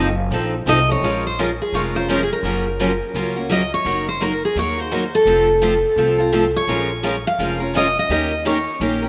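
Virtuosic and swinging, this fragment of Bb-minor jazz manouche at 170 BPM sets an up-front dreadnought steel-string guitar taking the picked lead, with a solo spot from 0.0 to 1.0 seconds, over a boxy parlour guitar and a bright auditorium guitar with audible finger squeak picking out the changes from F7 through Bbm7, Gbmaj7 and Eb7, all anchored by a woody, thumpy pizzicato upright bass on gut strings, and bathed in a long wet plate reverb in a rough home-demo mix.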